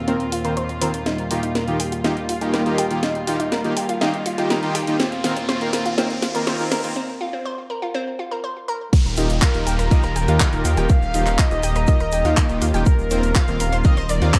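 A straight 4/4 house groove drives this hopeful, euphoric progressive house passage, cut from a longer piece, where a tape-warm house drum kit with a cracking snare, handclaps, hi-hat and crash, its hats and cymbals pumping to the sidechain, runs under a build-up with a drum fill from 1.1 to 7.0 seconds. From the start, floating, sul tasto studio strings hold soft-attack sustained chords while a round, detuned analog pluck spins bright arpeggios through chorus and delay under a filter sweep, and a smooth, evolving supersaw adds pumping stabs between Bbsus2/Eb and Ebadd9 harmony. A riser and downlifter sit in the background, and after a short break the drop lands at 8.9 seconds, where a punchy, up-front electronic kick and a grainy egg shaker arrive together. A deep, rumbling detuned saw bass follows with a saturated, beating low end, and a thick, bold unison lead carries the melody with vibrato, lush chorus, vintage 12-bit sampler grit and dub echo. 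The dark, high-passed production sits in a moderate digital room.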